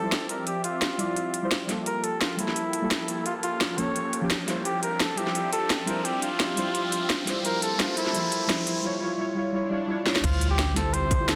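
This dreamy, soulful liquid drum and bass excerpt in D minor, at 172 BPM with a light swing, opens on a flugelhorn melody with light vibrato and scooped notes, played in a pop style through a low-pass filter and tape echo. Beneath it, a deep, soft chord stab with a fast, decaying attack and a dark, wavering tone carries chorus and digital delay. A lush pad of detuned unison sawtooths fades in slowly and sustains, bright and thick, as the harmony moves through Dm11, Gm9, A7b9b13 and C#dim/G. A produced drum kit sits up front, with a cracking snare, crisp hats and crash cymbal in studio reverb, while an electronic riser builds from 2.1 seconds and a swell leads into a drum fill. At 10.2 seconds the drop lands with an impact, a tight, tape-tinged electronic kick and a woody, growly pizzicato upright bass on D2. The whole mix sits in a wet recital hall reverb and is mastered dense and heavily limited.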